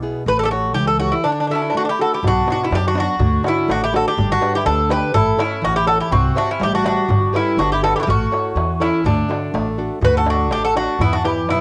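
This home recording on cassette has a moderate booth ambience, with a short room decay around the players. It is an energetic Greek folk piece for a bouzouki band in a straight 2/4, cut from a longer performance and bright in mood. The nylon-string guitar and pizzicato upright bass open together: the guitar is fingerpicked with a small, bright tone, and the bass has thumpy, woody gut strings. At 0.3 seconds the bouzouki takes the melody, metallic and up front, its doubled strings, some in octaves, carrying a cassette-tape colour of its own. A softer mandolin second line follows at 1.5 seconds with a round, picked tone, and at 2.2 seconds the darbuka enters, deep and band-limited, its clay shell and natural skin played with soft hands. The harmony moves through chords such as Bm, G, C and Gadd9 before returning to the opening material, ending on Em.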